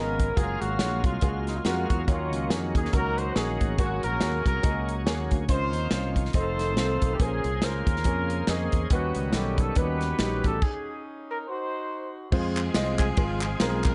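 A breathy, mellow trumpet and a distant horn section with tape echo carry the melody over woody upright piano, a shouting tonewheel organ with slow rotary speaker, overdrive and chorus vibrato, and a growly fingered electric bass in this hopeful, soulful, swung uptempo gospel fragment at 141 BPM, with a punchy, airy drum kit entering at 0.2 seconds, a stop at 10.6 seconds, and crisp group handclaps arriving at 12.6 seconds as the music moves to a new section on F minor.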